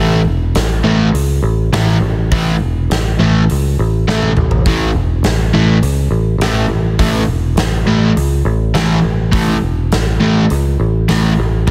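A dense, heavily limited modern master with a studio ambience carries this anthemic, energetic hard rock passage at 102 BPM in A major, opening on an A5 chord. An overdriven, double-tracked semi-hollow guitar plays an up-front riff from the start, alongside a growly, punchy picked electric bass recorded direct. A huge arena drum kit enters at 0.5 seconds with a big, natural room sound, a medium-tuned snare and a punchy kick, and it plays a fill at 4.1 seconds.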